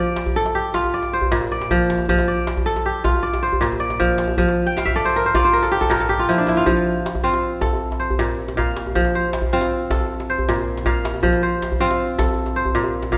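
The kora leads this West African traditional excerpt, fingerpicked and ringing up front with crisp arpeggios that span from Bb2 to G5. A djembe joins at 0.2 seconds, its tight, cracking hard-hand strokes recorded close and sitting a little lower in level than the strings. The music moves at 105 BPM in a straight 12/8 feel, counted in dotted quarters, and stays in F major, rocking between F and Bb chords throughout. Near the end of the first section, the kora plays a fill from 4.7 seconds, and the drum adds its own fill from 6.1 seconds, leading into the second section at 6.7 seconds. The mood is hypnotic and warm, and the whole recording sits in a resonant recital hall with a long, wet reverb that carries the sound like a church or concert space. It is cut from a longer piece.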